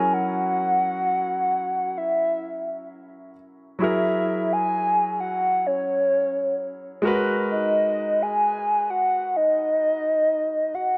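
A lightly swung 16th-note R&B groove at 65 BPM in 4/4 carries this moody, sensual fragment from a longer piece, where a hollow, woody clarinet-like synth lead with a soft attack, vintage warble, vibrato and chorus sings the melody up front over a warm baby grand piano's accompaniment, moving from F#7 to F#9 at 3.8 seconds and G#m9 at 7.0 seconds in a lush hall reverb.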